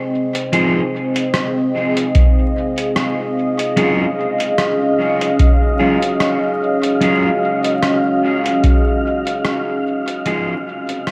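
A deep, dry electronic kick sits up front from 2.2 to 8.8 seconds in this hazy, meditative ambient dub piece at 74 BPM in Eb dorian, beneath a warbling, detuned dark pad holding Fm7 and Ebm11 chords, slightly broken-up electric guitar stabs with dub echo, a muffled lo-fi sampler-style kit of hi-hat and rim click, and a breathy wind-like noise texture in the background, all wrapped in echo-chamber reverb and vinyl crackle before the fade-out from 8.1 seconds.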